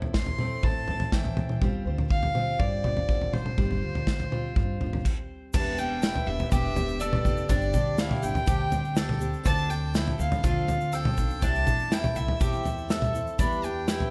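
A punchy, up-front country drum kit, recorded in a small room with a medium-tuned snare, crash cymbal and toms, drives this hopeful, nostalgic indie folk passage at 122 BPM in a straight 4/4. Above it a single bowed fiddle carries the melody with a nasal, reedy, gut-string tone, sitting distant in plate reverb and tape echo, while a woody, dark pizzicato upright bass stays in the background. A fingerpicked steel-string acoustic guitar with fresh strings and audible finger squeak accompanies the opening over Am and G7sus4, then drops out at 7.0 seconds. After a brief stop at 5.0 seconds, the arrangement builds at 5.5 seconds: a bright, shimmering twelve-string guitar adds full-bodied octave-doubled picking, a bowl-back mandolin plays arpeggios on its double strings, and a grainy, compressed tube shaker sits in the background. The chords move through Em7, Gsus4, Dm7 and Am7/C before returning to Em7, all under a light reverb.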